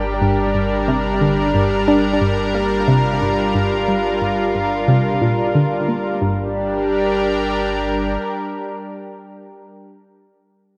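Washed in a lush hall reverb with a long 2.6-second tail, this fragment of mysterious, expansive space music feels vast and airy. A thick, detuned unison pad sits up front, holding sustained chords through its chorus with a slow-blooming attack. Beneath it, an analog pluck with a round, wave-folded edge and a snappy filter attack plays a sequencer-style riff, its chorus and delay trailing each decaying note. A deep sine sub bass anchors the low end with a steady hum and fades out as the music moves on. The pluck drops away at 6.5 s, the sub bass at 8.2 s, and the bright pad carries on alone until 9.6 s.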